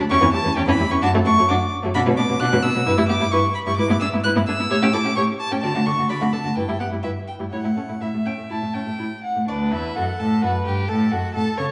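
An up-front violin with light vibrato carries the melody high above this quick, spirited classical-period string quartet movement in D major at 130 BPM, played with rubato on gut strings in period style, as a second, rich violin, a warm viola with a smooth top and a reedy, nasal cello bass fill out the lively texture in a wet scoring-stage reverb, the harmony arriving on D at 9.5 seconds in this brief cut from a longer piece.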